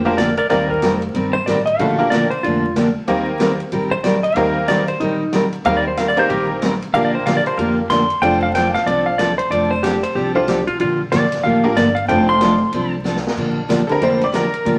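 Swinging and playful, this excerpt of country western swing moves at a brisk 186 BPM in Bb major, its eighths lilting over sixth chords while vinyl crackle and a club reverb color the whole. An electric slide guitar solo runs until about 13.4 seconds, while a dark, compressed lap steel adds a second line until about 12.9 seconds, backed by a bright, full-bodied picked acoustic guitar, a woody, thumpy pizzicato upright bass and a natural big-band drum kit with a punchy kick. After a short drum fill, a metallic, jangly tack piano, present from the start, steps forward for a honky-tonk solo through the final bar.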